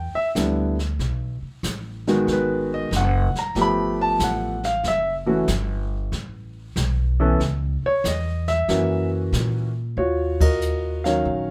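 Swinging and smoky, this brief excerpt of a jazz piano trio at 94 BPM features a warm grand piano soloing up front until 10.0 seconds over a woody, thumpy pizzicato upright bass and a brushed drum kit with dark cymbals and a boomy kick that enters at 0.4 seconds, all in a light reverb, before the band hits a short accent at 10.3 seconds.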